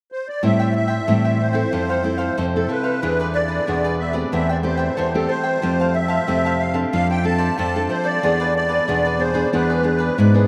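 Samba in A minor at 92 BPM, this yearning, bittersweet passage cut from a longer piece opens with a reedy, shimmering musette accordion at 0.1 s, carrying the melody up front with a boxy small-room tone. At 0.4 s a crisp, picked cavaquinho, a fingerpicked classical nylon-string guitar with audible finger squeak, and a full-bodied, deep nylon-string bass guitar join to trace a progression moving from Am7 through Fmaj7 and E7 to Dm7/F. The whole is set in a vast, echoing space with a huge, wet ambient reverb.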